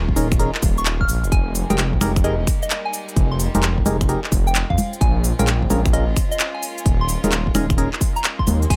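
A dry cut from a soulful, skippy two-step UK garage track at 130 BPM with a swung 16th feel, where a deep, rumbling detuned saw bass sits up front with a punchy layered kick, alongside an up-front house kit of crisp hats, handclaps, finger snaps, shaker, congas and crash cymbal, while hollow organ stabs and a pure, gentle synth-bell melody entering at 0.8 seconds both shimmer through chorus, phaser and dub echo over a faint, biting studio violin section holding sidechain-pumped chords that move from Eb7sus4 through Fm11 and Bbm7 and back.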